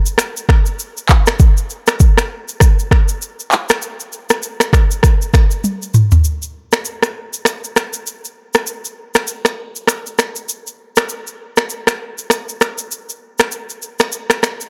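An afro-pop drum kit enters at 0.1 seconds, setting up a hypnotic, sultry afrobeats groove at 99 BPM in 4/4 with a swung sixteenth-note feel. The kit is electronic and produced, built from a deep kick drum, rim clicks, handclaps, finger snaps, shaker and toms, all sitting up front in the mix. A drum fill between 5.6 and 6.2 seconds carries the music into a new section, which continues until the kit stops at 14.7 seconds. Light reverb gives the percussion a touch of space. This short passage is cut from a longer piece.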